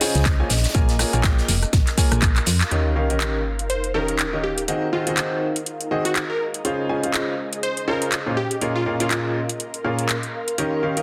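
Euphoric and joyful, this piano house excerpt rides a bright, woody upright piano riff with sidechain pumping and dub echo over tape-warm house drums of handclaps, metallic hats, rim click and shaker, while a punchy electronic kick, a round FM bass and a faint acoustic kit fall away by 2.7 s, a sub drop marks the turn, and a catchy detuned plucky lead with phaser enters at 3.7 s above an ethereal, airy pad with chorus and tremolo in the background.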